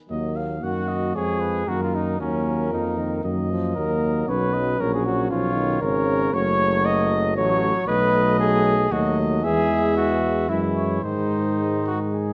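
In a rubato 3/4 at 115 BPM, this solemn, heroic classical brass quintet excerpt in Eb minor sets a warm, lightly vibrato trumpet melody over a mellow French horn and bright trombone in the background and a roomy, up-front tuba bass, joined at 0.6 s by a clear, up-front flugelhorn second line, all in a moderate recital hall reverb as the harmony moves from Ebm through Gb and F#m to B7, E and G#.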